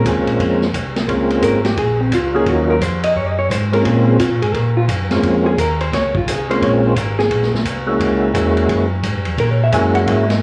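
The up-front percussive tonewheel organ carries the melody in this late-night, bluesy soul jazz organ trio, its lightly overdriven, full tone colored by chorus vibrato and a slow rotary speaker. A dark, clean hollow-body electric guitar takes a picked, compressed solo running from 0.0 to 10.4 seconds, in the upper-middle register. Underneath, a second, mellow tonewheel organ supplies a round bass line with audible key click, also turning through a slow rotary speaker. A vintage acoustic drum kit with dark cymbals, a medium-tuned snare and a punchy kick drives the 174 BPM swing in 4/4, sitting further back in a rolled-off studio room sound. The harmony stays in Bb minor, moving from Bbm7 to Ebm7, back to Bbm7 and on to Gb7. Light reverb and small-room ambience meet a worn, warbling cassette-tape quality with drifting pitch, giving this excerpt from a longer piece a smoky, aged feel.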